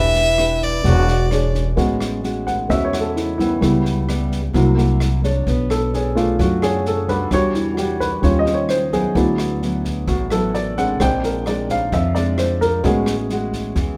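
A straight 4/4 bossa nova groove at 130 BPM in A major sets a romantic, relaxed mood, carried by an airy, open jazz drum kit with boomy kick, rim click and snare, a growly pizzicato upright bass, and a thumb-plucked classical nylon-string guitar. A sul tasto violin with light vibrato and a breathy trombone share the opening phrase, the violin until about 1.6 seconds and the trombone until about 1.8 seconds, when the dark, mellow baby grand piano, its action noise audible, takes a solo through to 14.0 seconds. Light reverb surrounds the intimate, up-front piano and violin in this excerpt cut from a longer piece.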